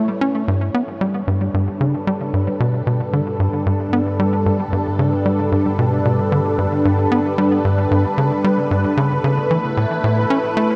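A lush, detuned unison pad fades in on a G6 chord with chorus and phaser, while a tight, punchy sequencer bass drives a saturated filter-pluck riff through analog delay, both up front in this expansive, cosmic passage of ambient space music at 113 BPM in G lydian. At 2.3 seconds a mellow, nasal analog drone with pulse-width modulation enters in the background, sustaining low under the pad as the harmony moves to Aadd9 at 9.0 seconds. A huge ambient reverb with an 8.9-second tail surrounds the sound, and the passage is cut from a longer piece.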